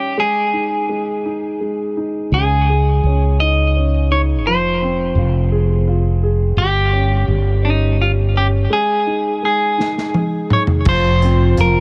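A clean electric guitar carries the melody up front in this swaying, romantic six-eight pop ballad cut from a longer piece, its picked notes trailed by delay. A polished grand piano supports it from the start with present chords that move through suspended, minor and rootless seventh colours. At 2.3 seconds a bright fretless electric bass comes in, direct and amped, sitting forward in the mix. The acoustic drum kit arrives only at 9.8 seconds with a fill, using toms, snare, kick, hi-hat and crash, its sound smooth with a tight kick and a rolled-off top. At 10.9 seconds a dark French horn section adds a classical-style second line in the background, and the whole ensemble sits in a small room ambience.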